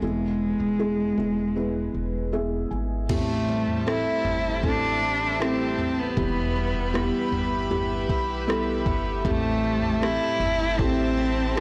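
Melancholic and heartbroken, this pop ballad in A minor moves at a slow 78 BPM in a straight 4/4, cut from a longer piece. A warm, nasal cello carries the melody up front with vibrato, sitting over a felt-muted upright piano whose thick felt and audible action noise give it an intimate, mellow voice, while a woody, thumpy pizzicato upright bass with tube saturation anchors the low end. The piano plays a fill from 1.9 to 3.1 seconds, and at 3.1 seconds the arrangement fills out as a clear studio string section adds sustained chords with light vibrato, a parlour-style steel-string acoustic guitar picks arpeggios through tape echo in the background, and an electronic R&B drum kit with a soft kick enters with overdrive, using kick, rim click, toms and crash cymbal. The harmony moves from E to Am7, Em and back to Am7. A moderate concert hall reverb surrounds the parts, yet the recording as a whole is blown-out and overdriven, lending the tender material a harsh, saturated edge.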